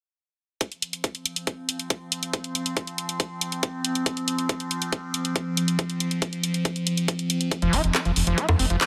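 A tight, up-front electronic kick with a high-pass filter drives a straight pulse from 0.6 s, layered with a garage kit of bongos, handclaps and hi-hat, setting an alien, driving psychedelic trance mood in this fragment of a longer piece. At 1.4 s a bright, morphing wavetable pad enters with slow-attack sustained chords, coloured by phaser, built-in reverb, gritty 12-bit sampler texture and sidechain pumping. Near the close, at 7.6 s, a screaming, squelchy acid riff with resonant filter sweeps, distortion, chorus, cassette tape character and digital delay arrives together with a deep, round analog bass warmed by tube saturation and edged with ring modulation, all set in light digital ambience.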